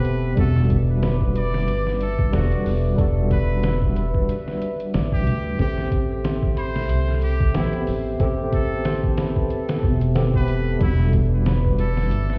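An up-front upright bass, pizzicato, woody and dark on steel strings, anchors this hypnotic, shadowy trip hop passage, cut from a longer piece and running 12.4 seconds. A compressed, pitched-down sampler-style drum kit carries the swung groove, with a thumpy kick, a medium-tuned snare and hi-hat, all bathed in studio reverb and muffled in tone. An overdriven tine electric piano, gritty through a combo amp with tremolo, carries the accompaniment over a deep, moody analog pad of detuned square, sawtooth and triangle waves with a sub octave, moving notch, slow attack, long release and chorus. A straight-muted trumpet takes the solo melody, nasal and brilliant with vibrato in a pop style, coated in 12-bit sampler grit and tape echo, while a fingerpicked flamenco guitar plays arpeggios in the background through its own tape echo. The harmony moves from Em7 to Am7 and back, and a small room ambience reaches the ear as if through a wall, with stone room reverb.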